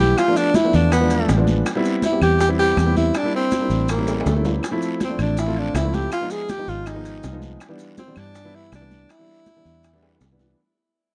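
A lively, danceable Afro-Cuban jazz groove in straight 4/4 at 162 BPM, with raspy guiro and grainy maracas sitting in the background from the start, joined at 0.2 seconds by bright high-tuned congas, round low bongos, ringing metal-shelled timbales and woody claves, and a drum fill marking 4.1 seconds. Up front, a dark, foam-muted fingered electric bass anchors the C major harmony beneath a warm grand piano of short sustain, moving through chords like Bm7b5, E7b9, Dm9 and Abm6 to Cmaj9. A clear, breathy tenor saxophone leads with scooped notes and a touch of tape echo in a dry, close 1970s-style studio sound, the whole cut from a longer piece and fading out across its 10.6 seconds.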